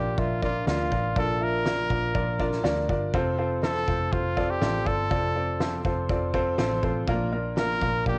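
This short excerpt of anthemic, piano-driven pop in F major opens with a clear concert grand piano, a bright trumpet and an electric bass, the first two up front. The trumpet carries the solo melody in a pop style with light vibrato and scooped notes, while the piano's intimate accompaniment, with its audible action noise and deep bass, reaches from Bb2 to F5. The dark, round, foam-muted electric bass plays the low line through an amp, and a loose indie drum kit joins at 0.2 seconds from a distant, roomy studio space, with a fat snare and a punchy kick. The tempo is a straight 122 BPM in 4/4, and the harmony moves from Bb to F at 3.1 seconds before returning to Bb. The trumpet, piano and drums carry a cassette-tape character, and light reverb gives the whole home recording a warm mood.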